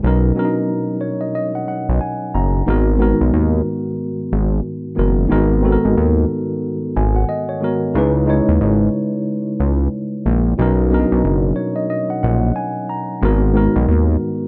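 Moody, dark swung hip hop excerpt in which a worn, slightly out-of-tune tine electric piano, filtered at both ends, plays chords moving from Bmaj9 through G#m7 and C#m7 while a fat, detuned sawtooth analog bass with a filter sweep sits thick and up front beneath it, both in a small room's moderate reverb.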